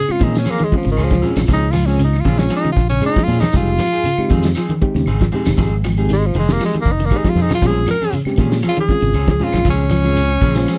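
An intense, hypnotic afrobeat groove in straight 4/4, heard as a short cut from a longer piece and captured as a dry, close studio recording in a 1970s style. A clear, punchy tenor saxophone takes a solo with vibrato throughout, sitting up front over chords that move from Bbm9 to Fm7 at 3.5 seconds and back to Bbm9 at 7.6 seconds. Beneath it, a round, dark fingered electric bass and a damped 70s drum kit with a fat snare, tight kick, hi-hat and rolled-off top drive the rhythm. One twangy, slightly broken-up electric guitar plays fingered arpeggios in the background through a lush chorus, while a second, darker picked guitar adds stabs. A reedy, mellow electric piano with fast tremolo supplies accompaniment through its built-in speakers. Very quiet ringing congas, woody claves and a grainy shekere round out the percussion, the claves and shekere set back in a large room.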